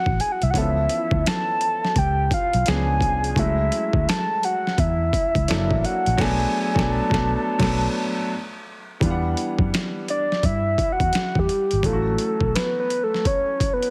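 Smooth and sensual, this neo-soul R&B excerpt from a longer piece rides a swung groove, with a soft, round synth lead carrying the melody up front, thickened by a sub octave, vibrato, chorus and a slapback echo. A clear, intimate baby grand piano with audible action noise and long sustain comps through lush extended chords, while a dark, foam-muted vintage electric bass stays punchy until 12.5 seconds and a gritty, pitched-down boom bap kit with a thumpy kick and overdrive sits up front. The band hits an accent from 6.2 seconds, and at 9.0 seconds the synth lead takes a solo, all under light digital ambience and a heavily compressed, radio-like finish.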